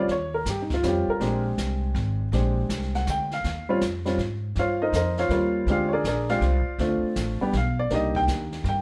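Swinging in a lilting three, this sophisticated jazz piano trio passage features an intimate baby grand with audible action noise taking the solo over woody pizzicato upright bass and a brushed kit with a boomy kick that enters at 0.1 seconds, heard from further back in a moderate studio room as the harmony moves between rich Eb13 and Bb13 chords before turning through Dm7, Bdim and Cm7.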